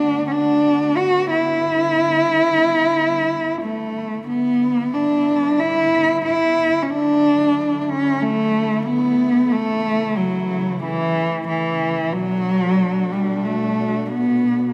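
Folk in a reflective, heartbroken mood, this piece features a single dark, nasal cello carrying an expressive, up-front melody with vibrato and portamento over a lush, woody studio string section holding soft-attacked sustained chords quietly beneath it, both bowed and close, bathed in a moderate scoring-stage reverb as the harmony moves from D6 through Em7, Dadd9 and A/C# to Bm7.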